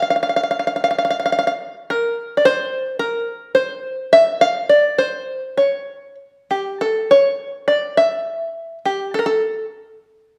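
Fado in 4/4 at 106 BPM, played rubato, carries a mournful, passionate mood in this short excerpt cut from a longer piece. An open-back banjo plays solo and up front from 0.0 to 9.6 seconds, its acoustic, fingerpicked tone twangy, plunky and percussive as it moves between G4 and F5. A wet, large studio reverb surrounds the live room sound, and the piece shifts into a second section at 6.8 seconds.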